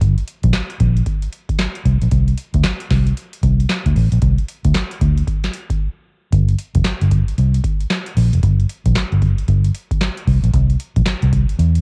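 A 16th-note swing of 62% drives this slick, punchy new jack swing groove in 4/4 at 114 BPM, carried by a booming analog drum machine with a deep kick, crisp snare, handclaps and metallic hi-hats, the snare, clap and hats set in a short room and the whole kit re-recorded in a large room. Up front beside it, a vintage muted fingered electric bass plays a dark, round, foam-muted line through an amp, sitting between F1 and E2. The excerpt, a cassette home recording with little reverb, pauses for a brief break at 5.8 seconds before moving into a new section at 6.3 seconds.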